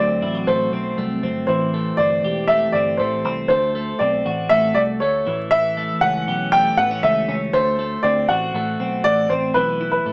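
A dark upright piano carries the melody up front, its woody, mellow tone close and intimate enough that the action noise of the instrument can be heard under each phrase. Behind it, a twelve-string electric guitar plays bright, twangy, compressed arpeggios, clean and picked, with an analog delay trailing its notes. Lower in the mix, a vintage electric bass gives a round, punchy, foam-muted line with an amped, dark edge. The piece is jangly indie pop in a straight four, bittersweet and restless in mood, cycling through D7, Am7 and A7 before reaching toward B7sus4 at 9.6 seconds. Moderate studio reverb and a small-speaker character shape the sound. This clip, cut from a longer piece, has all three parts playing throughout its 10.1 seconds.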